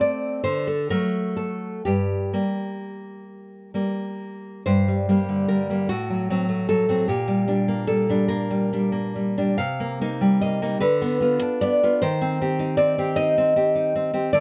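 In a rubato 6/8 that drifts between 41 and 52 BPM in dotted quarters, this melancholic, intimate romantic piece in G minor is carried by a single fingerpicked nylon-string classical guitar, heard up front and ranging from G2 to F5. The fresh strings give a warm acoustic tone, with audible finger squeak and light reverb in a dark production. The harmony moves from D to G minor, then shifts at 4.7 seconds into a second section through diminished and C minor colours before the 14.4-second fragment, cut from a longer piece, ends.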